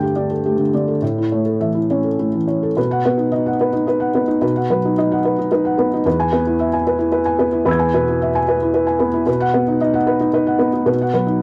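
A felt-muted upright piano plays alone in this tender, hopeful neoclassical minimalist passage cut from a longer piece, moving at 110 BPM in a rubato 3/4, its muted, dark, boxy tone sitting up front with audible action noise in a dry, close 1970s-style studio room, spanning E2 to G#6 as it drifts from Gsus2 and A into a second section at 2.8 s that settles on B and E before returning to B at 9.3 s.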